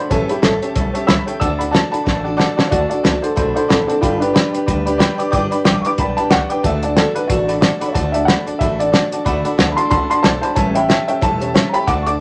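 Swung eighths drive this rowdy, upbeat rockabilly fragment, where a cloth-damped, thuddy drum kit with a fat snare sits up front, a woody pizzicato upright bass with gut strings thumps underneath, and a bright picked steel-string acoustic guitar with finger squeak joins a jangly, detuned honky-tonk upright piano in accompanying a mellow, dark upright piano that carries the melody and takes a solo from 2.7 seconds after a drum fill, with the honky-tonk piano adding a fill at 4.8 seconds, heard in a wet small room with lossy compression artefacts.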